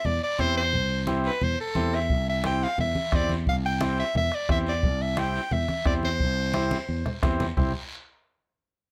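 Joyful and sunny, this brief cumbia excerpt moves at a brisk 176 BPM in C major, led by an edgy, pop-style soprano saxophone melody up front with plate reverb, over a warm, up-front fingered electric bass. A buzzy vintage combo organ fills in the accompaniment, while bright, low-tuned congas and a raspy guiro sit in the background. A close, dry bombo played with a soft beater joins at 2.1 s, and a drum fill at 6.7 s leads into a new section at 7.6 s.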